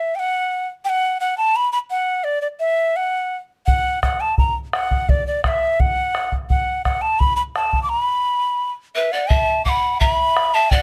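A straight 2/4 pulse at 85 BPM carries this wistful yet festive Andean folk ensemble, tuned to A4 = 439 Hz and cut from a longer piece. A breathy, hollow cane quena leads the melody from the start with a straight tone, crisp chiff and lifted highs; the deep acoustic bombo joins at 3.7 seconds in a live room; and a bamboo pan flute with unsteady vibrato adds a second line at 9.0 seconds, just before a new section begins. Light reverb and a dark, warm production frame these up-front parts.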